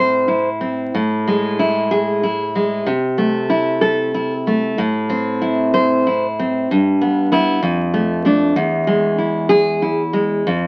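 A very old 78 rpm record with vinyl crackle and moderate studio reverb frames this brief romantic excerpt for solo classical guitar, cut from a longer piece and set in A minor with tuning slightly below standard pitch. Played rubato in 6/8 at about 63 beats per minute, the up-front nylon-string guitar is fingerpicked on fresh strings, warm and intimate with audible finger squeak, ranging from E2 to C5. Its passionate harmony moves from A minor through inverted chords to a closing E at 8.6 seconds, and the excerpt ends at 10.7 seconds.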